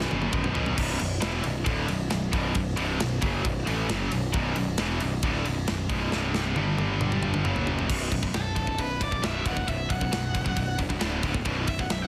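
A drum fill and a brief flash of lead guitar open this epic, heavy metal passage alongside an up-front, double-tracked, scooped high-gain rhythm guitar riff that drives on throughout over growly fuzz bass and a tight acoustic kit with bright cymbals, a second fill at 6.1 seconds leading into a distorted lead guitar solo with digital delay from 8.3 seconds, in a dense, heavily limited mix with small-room ambience.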